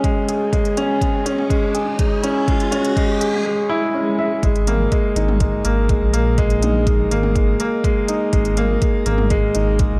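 A woody, up-front upright piano riff with long sustain, tape echo and shimmer reverb leads this cinematic, moving piano-and-strings electronica excerpt in a straight 4/4, backed by a deep electronic kick and a smooth-hatted electronic kit with toms, while an electronic riser and swell build until 4.4 s, when a dark, rumbling detuned saw bass with sidechain pumping enters for the drop over a moderate echo-chamber reverb.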